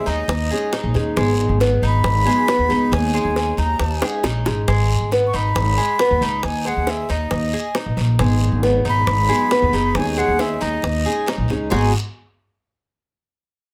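An airy, vibrato-laced silver concert flute carries the melody throughout this sultry, danceable excerpt of Cuban son and guajira, while a metallic, double-strung tres picks arpeggios beneath it. An up-front upright bass gives a woody, growly pizzicato foundation, joined by tight, high-tuned bongos and a raspy guiro, with a drum fill at 4.0 seconds. A boxy archtop guitar with audible finger squeak adds picked accompaniment, dropping out at 4.7 seconds and returning at 8.2 seconds, all set in light reverb over minor-key chords that close on an open G#7 voicing that omits the third.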